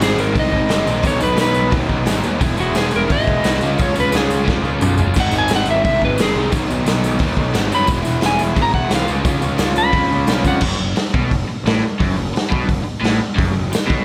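A raw, lightly reverberant excerpt of rowdy, swaggering garage rock in straight 4/4, cut from a longer piece. A slightly broken-up slide guitar with tape echo solos from the start over a double-tracked, compressed overdriven guitar riff, a growly fuzz bass and an up-front drum kit with a punchy kick and a saturated, rolled-off top in a bright stone room, while a close, jingly tambourine sits in the background. The drums play a fill at 4.5 s, and at 10.6 s the slide guitar stops as the band moves onto a rootless suspended chord.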